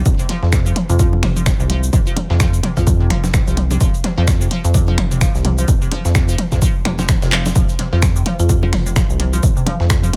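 A digital ambience surrounds this sparse, clinical minimal techno clip, cut from a longer piece, with a swung sixteenth-note feel. An electronic kick drum, punchy and up front with the character of a small room, anchors the groove beside a rubbery, hollow square bass that sits dark and bouncy while sidechain pumping breathes through it. A minimal click drum kit adds clicky hats, finger snaps, handclaps and shaker with a tape-softened edge, while a very quiet, gritty sampler-style kit contributes hi-hat and a fat snare underneath. Layered electronic toms and congas with digital delay sit in the background, and a drum fill arrives at 7.3 seconds. A resonant blip pluck plays a squelchy, evolving riff, bright and juicy through phaser, lush chorus, delay and its own sidechain pumping. A woody, buzzing marimba played with medium mallets surfaces in the background from 0.9 seconds and briefly again at 8.4 seconds, dry and close-miked with 12-bit sampler grit and digital delay.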